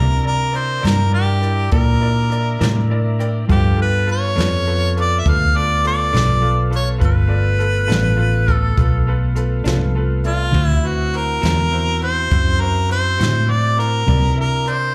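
Laid-back and rollicking, this fragment of a slow blues, heard live through a club PA, features an overdriven harmonica with slapback echo singing a smooth, lightly vibrato-tinged solo with scooped notes up front over a round, dark, foam-muted electric bass, while a brush drum kit enters at 0.5 seconds and a clean semi-hollow electric guitar with tremolo, a tonewheel organ on a slow rotary speaker and a bright, woody, slightly detuned upright piano sit in the background, the piano adding a brief fill from 2.6 to 3.5 seconds.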